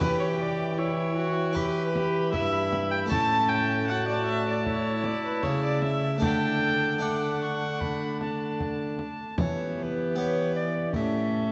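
Rustic and solemn, this short excerpt of a renaissance-style consort dance moves in a straight four. An alto recorder carries the melody with an airy, chiffy wooden tone and crisp attack. A single viola, nasal and reedy with gut strings, sits up front on a second line just beneath it. A second period-style viola with a smooth top fills out the accompaniment alongside a full, dry harpsichord plucked on two sets of strings, while a mellow trombone with vibrato holds the bass. A deep, large frame drum played with hard hands sounds close until 11.3 s, and the ensemble is bathed in a wet church reverb with a muted top end, turning to a new passage at 9.4 s before the clip breaks off.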